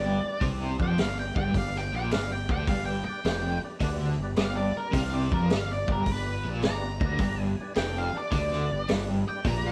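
A swung 4/4 groove at 106 BPM drives this swaggering blues rock and southern rock power-trio cut in G mixolydian, where a dark octave-fuzz lead guitar solos over a double-tracked, overdriven semi-hollow guitar riff with tremolo and a growly, bright fuzz bass, while a vintage drum kit with a punchy kick and high-tuned snare sits up front from 0.4 s and a percussive tonewheel organ with key click and slow rotary speaker holds clean sustained chords in the background of a live, moderately reverberant room marked by lossy compression artefacts.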